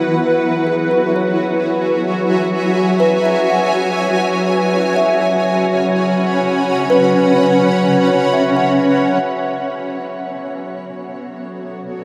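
A serene, reflective ambient excerpt in free time opens with three layers at once: a granular cloud pad holding sustained chords up front, a kalimba playing arpeggios, and an organ-like drone underneath. The pad is cloudy and blurred, a full-bodied, detuned sine texture with a slow attack, a long release and its own built-in reverb plus shimmer reverb. The kalimba sounds woody and dark, its ringing plucked notes carried through tape echo and shimmer reverb. Beneath them the calm drone blends unison sine tones thickened by ensemble chorus and built-in reverb. The harmony rests on C#7sus4 until it moves to Bm7 at 9.2 seconds, and the kalimba falls away at 10.0 seconds, leaving the pad and drone to carry on to the end. The whole recording sits in a vast, echoing space with a huge, wet reverb tail.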